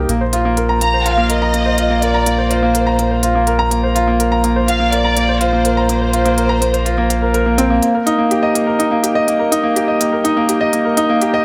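A clear, up-front grand piano riff opens this hypnotic, intimate piano-and-strings electronica excerpt, its audible action noise and long sustain trailed by tape echo, over a round, detuned analog bass that drops away at 7.8 seconds. Crisp electronic hi-hats, high-pass filtered and re-recorded in a large room, tick through the straight 4/4 groove, while a distant, lush violin section carries a bowed melody with vibrato and portamento from 0.8 to 7.3 seconds. Light reverb and studio ambience frame the sound, and the closing stretch turns into a build-up as the harmony shifts from one suspended chord to another.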